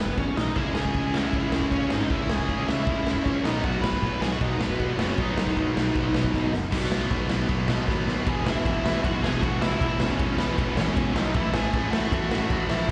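Punk rock at 156 BPM in a straight 4/4, this rowdy, energetic cut from a longer piece sits in E major and sounds like a live gig heard through a venue's PA, with a small room ambience and recital hall reverb around it. A bluesy lead guitar carries the melody from the start, dark and distorted with a slapback echo, while a fuzz-driven electric bass growls underneath, its overdriven tone bright and direct but set back in the mix. The raw garage drum kit sits up front, punchy in the kick and gritty and saturated overall, with a rolled-off top, crash and ride cymbals, and a medium-tuned snare. At 0.6 seconds two picked rhythm guitars join with the riff, one biting and overdriven, the other tight and distorted, both carrying slapback echo from the background. The chords move from C#m to B, with drum fills at 6.3 and 7.9 seconds marking the turns into new sections, before the harmony settles on E and closes on an A5 power chord.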